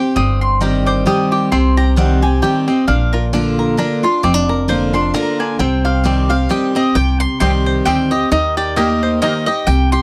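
A bright, double-strung mandolin takes a solo of stabs for the first 7 seconds of this haunting, rustic bluegrass excerpt in C minor, a swung 3/4 at 132 BPM, over a full-bodied picked dreadnought guitar, twangy fingerpicked banjo arpeggios and a growly, thumpy pizzicato upright bass, before a second, warm mandolin takes up the melody at 6.8 seconds as the chords move from Cm to Bb, back to Cm and on to Eb in a dry, close 1970s-style studio sound.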